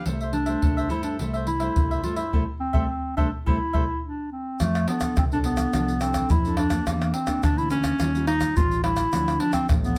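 Set in a moderate studio reverb, this sunny, playful samba and choro moves at 106 BPM in a straight 4/4, centred on C major and cut from a longer piece. Up front, a mellow clarinet carries the melody in a classical style, entering at 0.3 seconds and staying in a low register. A fingerpicked nylon-string guitar with fresh strings gives full-bodied, deep accompaniment, finger squeak included, while a crisp, warm, picked cavaquinho adds accompaniment until it drops out at 3.8 seconds. Underneath, an overdriven fingered electric bass sounds round and direct, and a close percussion group of tight surdo, pandeiro, tube shaker and tamborim drives the groove. A band accent and a short drum fill lead into a new section at 4.6 seconds, where the harmony shifts from the opening C6 to F6, then moves through Em7b5 and Eb9 to Dm9.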